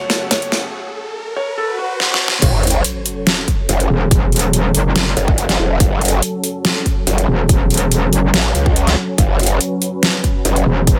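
Heavy wobble dubstep in F# minor at 142 BPM with a menacing half-time feel: a soft felt-muted upright piano melody with delay, a brief lush string texture and a bright, pumping supersaw pad in the background open the excerpt, while electronic riser, swell and sub drop effects, an overdriven drum kit with deep snare and metallic hats and a punchy, tape-warm kick build toward the drop at 2.4 seconds, where a growling, detuned, saturated bass and, from 3.9 seconds, an aggressive FM wobble bass with distortion and chorus join the drums and pad in a dry mix.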